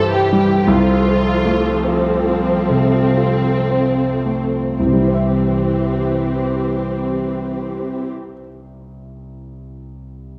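A clear, present grand piano carries the lyrical melody with long sustain through this lush romantic passage for piano and orchestra in rubato triple time, slowing over the opening 4.8 seconds, while a warm violin section with vibrato and portamento sings a soft-attacked second line and a dark, woody viola section supplies close accompaniment; both string sections stop at 8.1 seconds, leaving the piano to ring on alone to 10.4 seconds within a moderate stage reverb.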